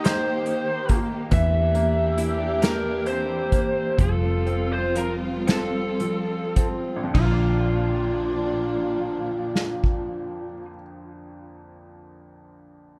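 From the first moment, an overdriven, lo-fi lead guitar with digital delay carries the melody of this tender, romantic 6/8 pop ballad in Bb major, over a mellow, distant French horn section, bowed strings with vibrato and portamento, a round, foam-muted electric bass, and an up-front acoustic kit with a punchy kick and bundle sticks. The tempo sits around 33-47 BPM in dotted quarters and slows from 1.3 to 7.1 seconds as the harmony moves from Eb through C7/E and Fadd9 to Bb. A bright, woody upright piano with long sustain accompanies throughout and plays alone from about 10.7 seconds until this fragment ends at 13.0 seconds, all within a dark, warm studio sound.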